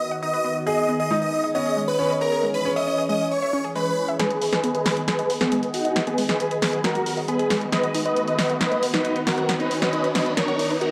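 At 136 BPM in straight 4/4, this uplifting trance excerpt soars as a huge, euphoric supersaw lead carries the melody through tape echo and a low-pass filter, joined by a brilliant baby grand piano until 4.1 s, a thick, airy unison pad with chorus and phaser, and a detuned pluck arpeggiating in the background, before a punchy analog drum machine with hi-hat and snare enters at 4.2 s for a build-up of drum fill and filter sweeps on lead and pluck, topped by a riser from 6.5 s, all in light digital reverb over B, G#m and C#m chords.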